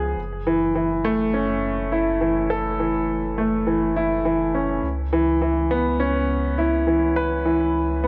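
In a straight 4/4 feel, this short, cinematic and moving piano-and-strings electronica passage pairs a clear, up-front grand piano riff with delay against a deep, rumbling, detuned sawtooth bass whose beating unison sits far lower in the mix, all set in a moderate echo-chamber reverb as the harmony moves from F#m7 to C#m7 at 4.8 seconds.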